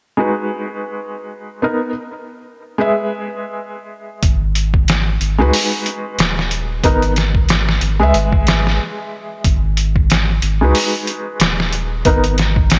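A swung 92 BPM trip hop groove in 4/4 takes hold at 4.2 seconds, when a compressed, pitched-down sampler kit with a thumpy kick, medium-tuned snare, hi-hat and vintage 12-bit grit enters together with a round, deep analog bass with a fast, plucky attack. Before that, a felt-muted upright piano plays alone in G# minor, its soft, intimate tone and audible action noise colored by tremolo, low-pass filtering and tape echo over chords moving between G#m7, Bmaj7 and E/G#. This dark, smoky fragment of a longer piece, set in light reverb with a bright 1980s-style digital sheen, pauses for a brief break at 8.8 seconds before a filter sweep on the piano begins at 9.4 seconds.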